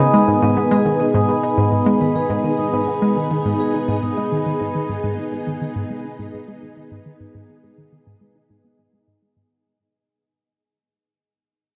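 Drenched in a huge, dark reverb, this hypnotic, cosmic fragment of sequencer-driven space music sets a round, detuned analog pluck riff with chorus, delay and a filter sweep beneath lush, vintage string-machine chords and ringing, metallic vibraphone arpeggios that stop at 4.9 seconds, all fading out from 0.3 seconds.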